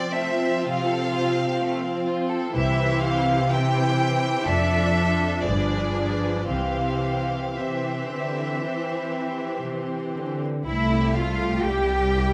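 Two violin lines and a lush, up-front viola section open this tender, slow romantic movement for string orchestra, the violins carrying a smooth vibrato melody over a second line in a flexible, rubato 4/4. A focused cello section enters at 0.7 seconds and a rich double bass section at 2.5 seconds, deepening the bowed harmony as the chords move toward C. Close, detailed microphones, light reverb and a vinyl crackle lend the excerpt an intimate, slightly aged sound.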